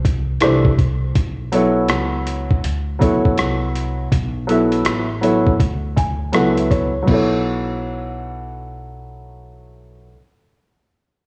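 Growly pizzicato upright bass and a gritty, thumpy boom bap sampler-style kit of kick, rim click, hi-hat and crash open this mellow, nocturnal jazz-hop cut at 81 BPM with swung 16ths in B minor; a smooth, vintage upright piano joins at 0.4 s under a low-pass filter sweep and plays a fill from 5.6 s before the drums drop out at 7.3 s, all set in light digital reverb with warbling cassette-tape pitch drift.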